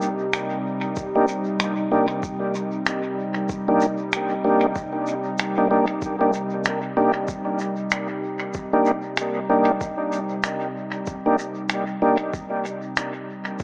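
Spacious and meditative, this ambient dub excerpt moves at 95 BPM in 4/4 with a 16th-note swing, settled in C minor on a single Cm9 chord. A bright, detuned sawtooth pad sits up front from the start, its soft-attack sustained chords colored by chorus and tremolo. Shaker and finger snaps, with a brushed, rolled-off top, run throughout under dub echo, and a muffled, thumpy sampled kick joins at 1.0 seconds with a compressed, tape-warm weight. At 1.2 seconds a smooth, clean tonewheel organ enters with stabs bathed in chorus vibrato and dub echo, standing out as the most forward voice until it drops away at 12.2 seconds. The echo-heavy mix rings in a moderate spring reverb, yet the whole comes through with a small-speaker character.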